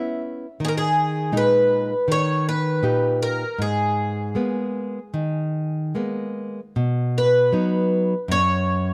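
A picked twelve-string acoustic guitar carries the melody up front, its boxy, shimmering, octave-doubled tone giving this mournful, passionate fado fragment a swinging, rubato lilt. Beneath it, a bright, small-sounding fingerpicked nylon-string guitar supplies the accompaniment, both instruments playing throughout over chords that move from C#m7 through D#sus4 and D# to G#madd9 before shifting to B at 6.8 seconds. The sound is dry and close, with a small room ambience that recalls a 1970s studio.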